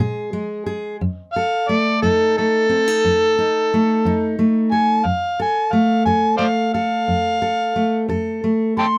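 This acoustic country blues excerpt has a soulful, rough-edged mood, moving at a slow 59 BPM in a straight 12/8 feel in F mixolydian, tuned to A4 = 444 Hz. A fingerpicked steel-string dreadnought guitar opens the excerpt, bright and full-bodied with the sparkle of fresh strings, carrying the accompaniment from F2 up to A4. At 1.3 seconds an amplified, overdriven harmonica enters to carry the melody between A4 and C6, its gritty tone colored by light vibrato, tongue slaps and scooped notes in a jazz-inflected solo. Both parts sit up front, with the harmonica slightly louder than the guitar. The harmony moves from Bb5 to F7, and the close, detailed microphones with light reverb give the duo an intimate, present sound.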